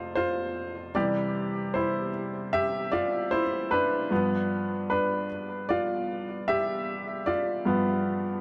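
Pop in C major at 76 BPM, this tender, hopeful fragment of a longer piece features a clear, woody upright piano playing solo from 0.0 to 8.4 seconds, intimate and up front with audible action noise, moving through F, Cadd9 and G7 in a lush hall reverb.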